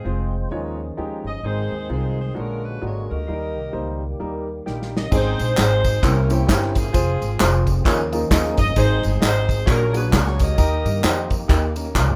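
A lightly reverberant, rough home-demo sound frames this soulful, reverent uptempo gospel cut with a swung feel, where a soft-attacked saxophone section with vibrato carries the melody over woody upright piano, a fat, key-clicking tonewheel organ sitting in the background through a slow rotary speaker, and an up-front pizzicato upright bass, before a soul drum kit with dark cymbals enters on a fill at 4.7 seconds and distant tambourine and handclaps join at 5.1 seconds.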